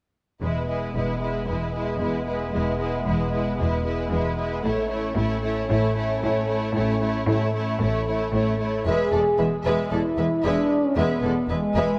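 Set in a moderate scoring-stage reverb, this heroic, majestic passage from a longer cinematic orchestral score opens at 0.4 s with two lush, focused violin sections, one carrying the melody and the other a second line beneath it, while an expressive viola section adds accompaniment with vibrato and portamento. A tight French horn section holds sustained chords in a light-vibrato classical style, and the bowed low end comes from a smooth cello section sitting in the background and an even, rich double bass section. The harmony moves from E to A at 4.6 s and returns to E as a new section begins at 8.9 s.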